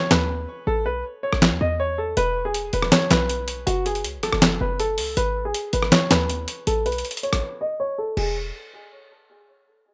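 A clear, up-front concert grand piano opens this wistful, dreamy hip hop and trap fragment at 160 BPM in a half-time feel, its melody passing through low-pass filtering, a filter sweep and digital delay over a rootless G#m, then A, E5 and F#m. A gritty, compressed sampler-style kit with a fat snare, handclaps, hi-hat, rim click and crash sits tape-warm and upfront, re-recorded in a large room, while a punchy, tight sine 808 bass with a noise layer and a fast attack decays underneath. The rough home-demo mix carries a digital ambience, and the piano and drums drop out at 8.3 seconds with the bass trailing to 8.5 seconds before a brief chordless stretch.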